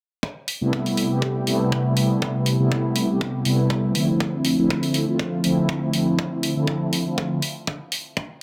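Sleek and groovy, this nu-disco excerpt sets a tight, natural acoustic kick drum and a layered, tape-tinged electronic hi-hat, re-recorded in a small room, beneath a round, brassy synth brass built from detuned sawtooth tones with a filter sweep, chorus, phaser, sidechain pumping and dub echo, its dark, sustained chords moving from Am7 to Dm7 at 4.2 seconds inside an echo-heavy mix touched by moderate spring reverb.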